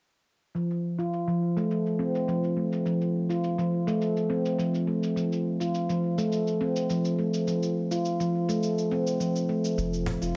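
Set in light reverb and gentle studio ambience, this mystical, hypnotic fragment of organic downtempo at 104 BPM in F major opens at 0.5 seconds with a ringing, up-front stainless-steel handpan playing meditative fingertip arpeggios through a low-pass filter, delay and a filter sweep, over a faint, overdriven, electronic cabasa re-recorded in a small room and also swept by a filter, before a round, sine-like sub bass enters at 9.8 seconds as the harmony drops away and a snappy, saturated cajon hit lands up front at 10.1 seconds.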